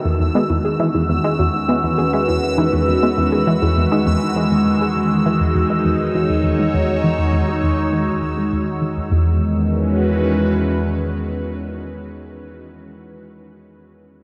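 Cosmic and expansive, this short cut from a longer piece of ambient, sequencer-driven space music moves at 101 BPM in a straight 4/4, resting on an E major chord. Up front, a swirling phased analog pad of detuned sawtooths holds sustained chords from the first moment until 12.3 seconds, its slow attack and long release softened further by chorus. Beneath it, a tight sequenced synth drives a low riff with a fast-attack filter pluck and delay, while a bubbling stepped-filter texture hovers high on E6, its resonant sawtooths jumping through random filter steps inside their own built-in reverb. Tucked in the background, a warbly, dusty pluck with a nasal, lo-fi edge and a noise layer spins delayed arpeggios until 4.2 seconds, and a filter sweep on that arpeggio sound runs through the opening section. A mellow analog drone with pulse-width modulation enters on E2 at 1.3 seconds. After the texture stops at 9.1 seconds, a brief second section lets the pad and drone linger in a huge, wet reverb with a 7.1-second tail, while the sequenced riff trails off at 9.4 seconds.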